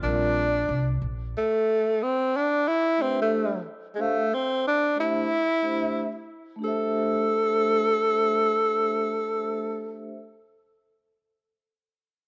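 This relaxed, smooth hip hop excerpt opens with an up-front tenor saxophone playing a jazz-style solo melody with a subtone, soft attack, scooped notes and vibrato. Beneath it, mellow soft-mallet vibraphone rings with a slow motor vibrato and a vintage, band-limited cassette-tape colour, while a woody, thumpy pizzicato upright bass on gut strings is heard only until 1.3 seconds. The swung groove moves through chords such as Bbadd9, Am7 and Gsus2, with a moderate spring reverb and the character of a home cassette recording, until the saxophone stops at 10.0 seconds and the vibraphone at 10.2 seconds.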